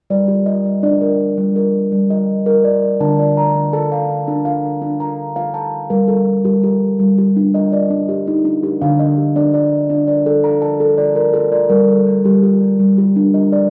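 A solo steel tongue drum, struck with soft rubber mallets, rings out round, pure and mellow, sitting up front across a range from D3 to Bb5 in this gentle, meditative world piece at 83 BPM in 4/4, in G minor tuned to A4 = 442 Hz. Its harmony alternates between Gm and Dm through a first section and a second that begins at 5.9 seconds, and this brief excerpt is cut from a longer piece. The drum carries cassette tape colour and tape echo, and it sits in a boxy small room with wet reverb, giving this home cassette recording an intimate, hazy feel.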